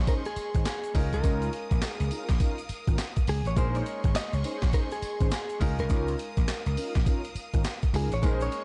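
A bouncy, slick new jack swing groove at 103 BPM in 4/4, with 16ths swung at 62%, driven by an up-front boom bap sampler-style kit of thumpy kick, high-tuned snare, handclaps, hi-hat and tambourine, carrying gritty 12-bit character and a large-room re-recording, alongside a punchy amped slap bass and a very quiet, grainy egg shaker. A bright, clean, direct-recorded electric guitar carries the melody over a Bbm11 to Db69 progression, while a polished concert grand with short sustain sits in the background, distant lush bowed strings hold sustained chords with vibrato, and round, detuned sawtooth synth brass adds stabs through chorus and digital delay. The production is dark, with a digital ambience, and the piece is cut from a longer work.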